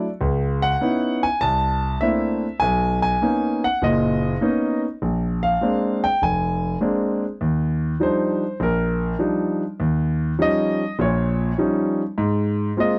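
A dry, close studio sound in a 1970s style, touched with light reverb, frames this short cut from a longer solo jazz performance. A warm concert grand piano carries everything on its own, sitting up front with a natural tone and a deep bass that reaches down to E#1. The mood is relaxed and swinging, with a lilting swung eighth-note feel in common time. The opening passage moves through rich extended chords such as C#m9, C13 and Bmaj9 before settling at 7.4 seconds into a new section built on Ebmaj9, Eb9 and finally Ab69 near 12.2 seconds. The harmony's lush colour and the intimate, warm presence of the instrument give the fragment an unhurried, relaxed charm.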